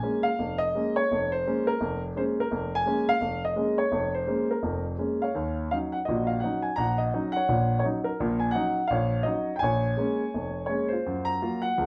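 A natural-sounding grand piano sits up front and carries this short solo jazz piece alone from 0.0 to 11.9 seconds, ranging from F1 up to Bb5. The mood is late-night and swinging, at 168 BPM in 4/4, with a loose rubato feel layered over a swung eighth-note pulse in Bb minor. The harmony moves from Bbm7 to Ebm7 at 5.4 seconds, returns to Bbm7 at 9.6 seconds, and reaches Gbmaj7 just before the cut. The piano's tone is warm, framed by a small, wet room ambience with a brief half-second decay. It has the rough feel of a home demo, lifted from a longer performance.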